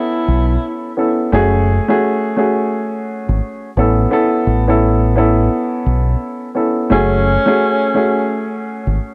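A breathy tenor saxophone with a jazz-style subtone, vibrato and scooped notes plays brief solo phrases at the opening and again from 6.9 seconds, its filtered, cassette-tinged tone trailed by analog delay. Underneath this gritty, tough hip hop fragment, a dark, woody upright piano carries the accompaniment throughout, coloured by the same tape and filtering, while a round, up-front dub electric bass enters at 0.3 seconds. The swung groove moves between Aadd9 and F#madd9 chords in a light reverb, with the lo-fi feel of a home cassette recording.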